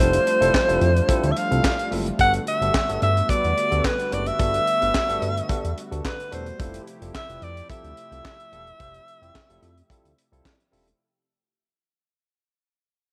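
Feel-good and smooth, this early-eighties boogie funk fragment sets a breathy, close-miked alto saxophone solo with vibrato up front over a barky, lightly overdriven tine electric piano, a soft detuned analog pad in the background, a glossy chorused synth bass and a tight acoustic drum kit with a high-tuned snare, hi-hat and handclaps, all moving between Fmaj9 and Gmaj9 in a small, lightly reverberant room as it fades out across its 11.0 seconds.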